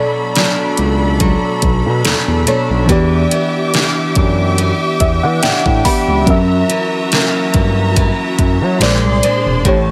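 This moody, longing contemporary R&B excerpt opens on a brief break, with a round, warbling FM electric piano carrying chorus, lush bowed strings holding sustained chords under a pumping sidechain, and a bright picked steel-string acoustic guitar playing arpeggios through a digital delay. The pop drum kit arrives at 0.4 seconds, electronic and layered with a knocking kick, a deep snare and hi-hat, overdriven and sitting up front with a small-room character. A smooth, gliding synth bass joins at 0.8 seconds, its sawtooth and triangle tones wave-folded, sustained and shaded with vibrato and portamento. The electric piano steps forward with a fill from 4.6 to 6.3 seconds, its dark, vintage tone edged by a soft noise layer, while fresh strings and finger squeak color the guitar's auditorium-like sound. Over a lightly swung groove and a light reverb, the harmony moves from Bm7 to Em7, then F#7 and A#9, keeping the longing feel unresolved.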